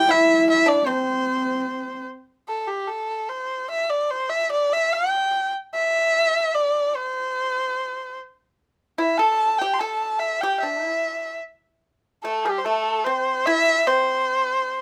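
In a rubato 2/4 at about 74 BPM, this festive, pastoral excerpt of Chinese traditional chamber music sets a rich, nasal erhu at the front, singing the melody with light vibrato and portamento throughout, while a dark, husky horsehead fiddle and a dry, percussive fingerpicked pipa add second lines until 2.0 seconds, and the pipa returns at 9.0 seconds, all heard through close, detailed microphones with light reverb.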